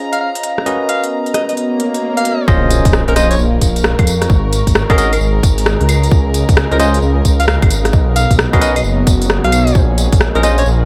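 UK garage in a bouncy, skippy two-step groove at 132 BPM in Bb minor, this excerpt opens with a bell-like, barky electric piano stabbing through a delayed, filtered haze, a warbling, nostalgic tape-like pad, soft distant violins holding sustained chords, and a bright alto saxophone singing a vibrato-laced pop melody, all over swung garage drums with crisp hats, claves, rim clicks and tambourine. A background swell rises from 1.7 s into the drop at 2.5 s, where an impact hits, a tight, tape-toned kick lands, and a deep, rumbling detuned saw bass pushes up front with tube grit. The pad and violins pump against the kick, the chords move through lush extended harmonies such as Dbmaj7, Bmaj9 and Bbm11, and a moderate room reverb glues the mix together.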